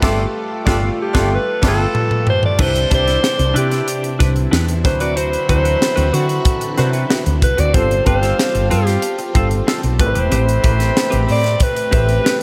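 Upbeat and breezy, this polished 1980s jazz-funk pop passage, cut from a longer piece, opens with a band accent and a drum fill before settling into a straight groove. A crisp fusion drum kit with a high-tuned snare and tight kick sits up front under gated reverb, beside a woody, growly fretless electric bass with a round, hollow-body tone. A dark baby grand piano with a worn, long-sustaining sound and subtle chorus plays accompaniment, while a clean, compressed electric guitar carries a fingered riff through analog chorus. A mellow horn section with octave doubling adds a tight second line in the background, and a very quiet phased string machine supplies swirling, warbling sustained chords with a vintage sawtooth shimmer. From 1.0 seconds a breathy alto saxophone takes the melody with light vibrato and a smooth jazz-style top, moving over rich chords such as Cmaj9, D13 and Am9, all in a small room ambience.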